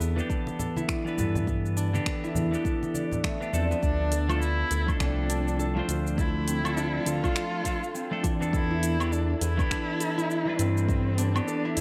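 Organic downtempo at 102 BPM in D dorian with a swung 16th feel, meditative and earthy: a bright, ringing, fingerpicked concert harp with digital delay plays arpeggios over an up-front, saturated sawtooth synth bass and a tape-warm afro-pop kit of finger snaps, metallic hi-hat, shaker and woodblock with a deep electronic kick, while a clean, twangy, picked electric guitar carries spring reverb, sidechain pumping and delay, soft-handed congas sit in the background until 3.7 s, and a dark, distant bowed cello enters at 3.5 s with expressive vibrato and portamento, the whole cut from a longer piece set in a moderate concert-hall reverb as the chords move from Em7 to Dm and back.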